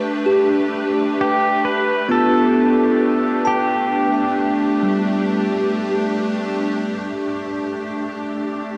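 The pedal steel guitar sits up front with a clean, compressed electric tone, played with fingerpicks and slide, carrying a short melody in volume swells from 1.2 to 6.2 seconds. This is a spacious, serene ambient piece at 66 BPM in a straight 4/4, cut from a longer work. An evolving wavetable pad, detuned and sine-based, morphs alongside it with slow attack and long release, thickened by ensemble chorus and its own built-in reverb. A bell-like tine electric piano with a bright, direct character spins arpeggios through a phaser and analog delay until 7.1 seconds, when the harmony moves from G7 to a D7 voicing lacking the third and the pad holds on alone. All three parts pass through cassette tape and shimmer reverb, and the steel also carries analog delay. The whole is a home cassette recording bathed in a wet spring reverb.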